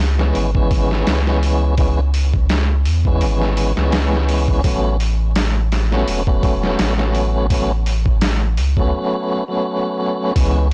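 Hypnotic and dark, this trip hop excerpt at 84 BPM pairs a deep, round sine sub bass and muffled, pitched-down sampler-style drums with a thumpy kick against a lightly overdriven tonewheel organ with key click, fast rotary speaker, tremolo, tape echo and 12-bit grit, moving from C#m7 to A69 before a break at 8.9 seconds, all wrapped in a blown-out, crackling vinyl sound.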